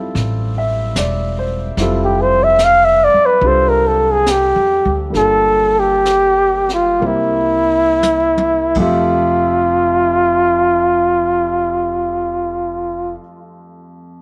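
Jazz ballad in F major, tender and late-night, cut from a longer piece and moving at a slow swung 4/4 that gradually slows between 1.8 and 9.1 seconds. A warm grand piano and a woody, thumpy pizzicato upright bass with gut strings carry the chords from Fmaj9 through Gm9 and C7. Brushes on a kit with dark cymbals, a high-tuned snare and a boomy kick add a drum fill at 8.0 seconds before dropping out. A mellow flugelhorn with vibrato and a smooth top enters at 2.0 seconds to take the solo melody up front, all set in a small room with light reverb.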